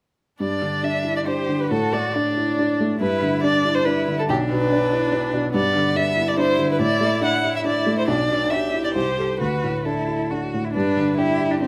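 A smooth, even solo violin with vibrato sits up front carrying the melody in this lively, cheerful classical-period movement for piano trio, a quick G major passage in 3/4 at 140 BPM played with rubato and cut from a longer piece. Beneath it a focused, bowed cello with vibrato sings a rich second line, while an intimate baby grand piano, present and up front with its action noise audible, supplies accompaniment from 0.4 s to 11.7 s. A moderate large-studio reverb surrounds the trio as the harmony moves through G, D and B minor colours before settling home on G at 10.7 s.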